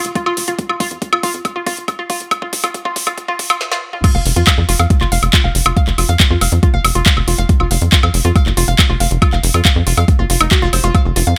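A tight, dark sequencer bass and an overdriven garage drum kit open this driving psychedelic trance piece at 139 BPM over an F5 chord, the kit's woody snare, metallic hats, handclaps, toms, crash and woodblock running through a build-up drum fill. At 0.2 s a knocking electronic kick joins up front, alongside a quieter organic, percussive wave-folded pluck riff coloured by chorus, digital delay and sidechain pumping. The drop lands at 4.0 s, with both drum parts sitting in a small room and a high-pass-filtered digital ambience in the mix.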